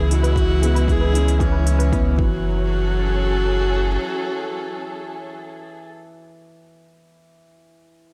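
Melancholic and moving, this short cut from a longer piano and strings electronica piece opens on a drop where a round sine sub bass and a deep, layered electronic kick sit beneath a dark, lush bowed string section with portamento and sidechain pumping. Smooth electronic hats tick along, and a soft triangle-and-sawtooth pluck arpeggio sits in the background, the pluck coloured by chorus and cassette tape. An intimate sul tasto viola with an airy bow carries the melody through digital delay, while a felt-muted upright piano, its action noise audible, plays a mellow riff that outlasts the other parts until 8.1 seconds, all under light studio reverb as the harmony moves from C#m7 through F#5 to F#m7.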